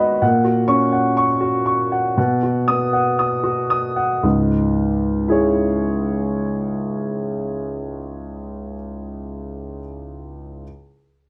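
Neoclassical minimalist piano, reflective and wistful, in which a solo concert grand with deep bass, a boxy body and long sustain sits up front in a moderate studio reverb with a cassette-tape character, moving freely in rubato and slowing through its opening seconds as the harmony passes from F#/A# to B and settles on C#m at 4.2 seconds in this short passage cut from a longer piece.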